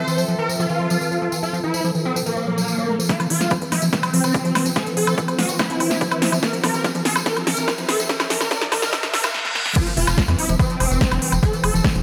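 Psychedelic and hypnotic, this 144 BPM trance excerpt in F major opens with a swarming, detuned rave lead up front, a bubbling stepped-filter texture in the background, a squelchy, resonant acid bass riff, a very quiet warbling lo-fi pad and a jingly tambourine; at 3.1 s an overdriven big-room drum kit with crisp hats and a punchy, layered electronic kick arrive, soon joined by a tight sawtooth sequencer bass, for a build-up of drum fills and filter sweeps, before a faint riser, reverse cymbal and impact usher in the drop at 9.8 s within a lush hall reverb.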